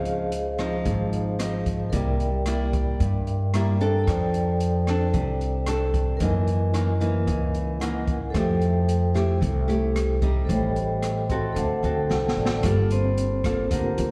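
Heard as a live club gig through the venue's PA, this short cut from a longer piece carries a roomy club reverb over a light studio sheen. It is a sunny, romantic bossa nova in F major, moving at 112 BPM in a straight 4/4. Up front, a dark, fingerpicked nylon-string guitar with a small body and a slapback echo shares the accompaniment with a metallic, ringing vibraphone played with medium mallets, its fast motor vibrato also touched by slapback echo. A woody, growly pizzicato upright bass with steel strings thumps up front, while a smooth open jazz kit with a boomy kick, medium-tuned snare, rim click, hi-hat and a rolled-off top sits further back. The vibraphone adds fills from 3.3 seconds, the drums fill at 12.1 seconds, and the vibraphone takes a solo at 12.6 seconds as a new section opens. The harmony drifts through lush colours such as Dbmaj9, Gb13, Am7b5 and D7 before landing on Gm9.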